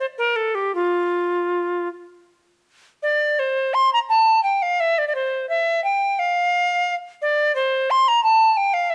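A bright alto recorder plays alone in this radiant, serene baroque-style fantasia in F major and 6/8, moving with free rubato at about 51-60 BPM and tuned to A4 = 445 Hz. Its airy, woody tone carries vibrato and soft attacks, sitting up front with lifted highs as it ranges from F4 to C6. Close, detailed microphones and a moderate stone-room reverb of 1.3 s surround the line, which moves into a new section at 3.0 s before the clip, cut from a longer piece, stops at 8.9 s.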